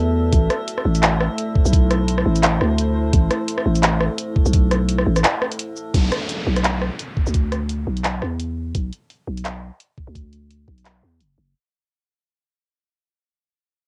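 A swung half-time groove drives this tense, cinematic drum and bass excerpt, with a knocking, up-front electronic kick and a layered kit of bright hi-hats, handclaps, rim clicks and shaker, all tape-coloured, under a growling, buzzy 808-style bass, while a dark, detuned analog pad pumping against the sidechain and an eerie, metallic FM drone with chorus and its own reverb hang over the opening until 5.9 seconds, when an electronic downlifter sweeps in as the track begins fading out in a lightly reverberant home cassette sound.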